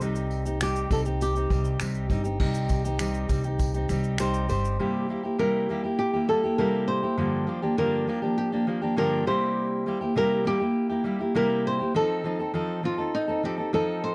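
Tender and wistful, this acoustic pop excerpt in straight 4/4 opens on a C minor chord. A full-bodied, up-front fingerpicked steel-string guitar is joined by a woody pizzicato upright bass, a soft brush kit with tight kick, finger snaps, shaker and crash, and a jingly tambourine tucked in the background. A dark-toned flamenco guitar, bathed in plate reverb, carries the melody from 0.6 s, and after the bass and drums stop at 4.8 s it continues with only the steel-string guitar over C7, Gm7 and F7, in a warm production with light reverb.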